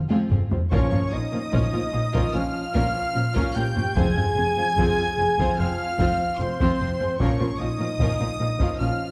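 Dramatic and heroic, this cinematic orchestral cue moves at 74 BPM in Bb dorian, opening with a taiko ensemble fill played with heavy sticks before a high, smoothly bowed violin melody enters at 0.7 s over a rich second violin line, dark violas with portamento, lush cellos and woody double basses. A mellow, hollow flute adds another line while distant French horns and clear trombones hold sustained chords and punchy trumpets hit stabs, with round, soft-mallet timpani joining very quietly at 4.0 s. The dark production sits in a moderate scoring-stage reverb, and the excerpt is cut from a longer piece.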